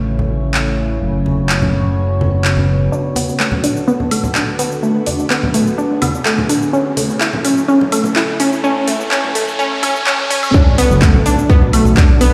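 Progressive house at 126 BPM in B dorian, this dreamy, driving cut from a longer piece opens with an evolving wavetable pad holding slow-attack, morphing chords under a fat, detuned sawtooth bass that sits in the background, both pumping against the sidechain. Ringing acoustic congas and a deep house kit with metallic hats, cabasa, handclaps and woodblock, its overdrive giving the kit grit, fill in the groove as the chords move from A to F#sus4. At 2.9 seconds a bright, up-front unison pluck begins arpeggiating over Bm7, its sawtooth tone carrying a noise layer, ring modulation, cassette tape colour and dub echo while a filter sweep opens it through the build-up. A background riser climbs from 5.0 seconds, and the harmony shifts to A at 6.7 seconds, leading to the drop at 10.5 seconds, where an impact lands and a punchy, overdriven electronic kick steps forward over a return to Bm7. The whole mix sits in a lush hall reverb and sounds as if played on a big sound system in a bare stone room.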